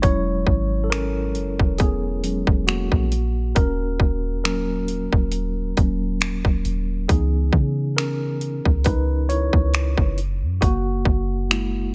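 A mellow tine electric piano takes the lead over E69, D#m7, C#m9 and F#7 chords in this moody, longing contemporary R&B excerpt at a slow 68 BPM with a light 16th-note swing, supported by a deep, round 808-style bass and an overdriven trap kit of finger snaps, metallic hi-hats and a hard-clipped kick, all close and dry in the mix.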